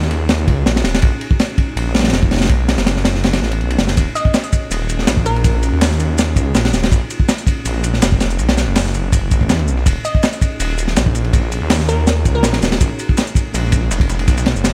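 Atmospheric and raw, this drum and bass excerpt with a jungle edge runs at 163 BPM in Eb minor, with a thick, menacing detuned saw bass sitting up front beside a crunchy breakbeat kit whose punchy kick, high-tuned snare and dark ride cymbal sound saturated and rolled off at the top. From 4.0 seconds a quieter, dusty soul sampler-style kit adds overdriven, compressed hi-hat, shaker and snare through analog delay, while a glassy wavetable pluck with chorus, 12-bit grit and dub echo surfaces briefly around 4.2 and 10.0 seconds. Minor eleventh chords on Eb, Bb and B cycle beneath it all in an echo-heavy, reverberant mix.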